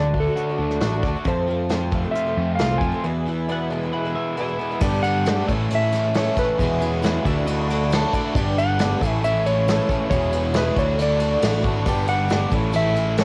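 Heard through a home cassette recording with light studio reverb, this hopeful, open-road folk and heartland rock excerpt in A major moves at 136 BPM, with a dark, slide-played lap steel carrying the melody over growly picked bass, a crunchy, double-tracked overdriven guitar riff up front, and soft brushed drums from a small room. A boxy, shimmering twelve-string acoustic guitar and a very quiet, clear grand piano fill out the accompaniment, while a bright, compressed twelve-string electric guitar adds a second line from 3.5 to 8.5 seconds. After a break on E, a reedy, breathing harmonium and a grainy tube shaker join at 4.8 seconds as the chords cycle through G, Amaj7, E6 and Dadd9.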